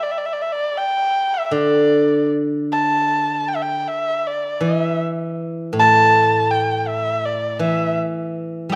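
Flowing in a loose, rubato 4/4, this graceful and festive fragment of Chinese traditional chamber music opens with a solo erhu carrying the melody, its dark, woody, boxy tone shaped by vibrato and portamento. At 1.5 seconds a steel-string zither enters in a low register as accompaniment, plucked with fingerpicks for a silvery, ringing sound. Both instruments sit up front in light reverb, and the passage is cut from a longer piece.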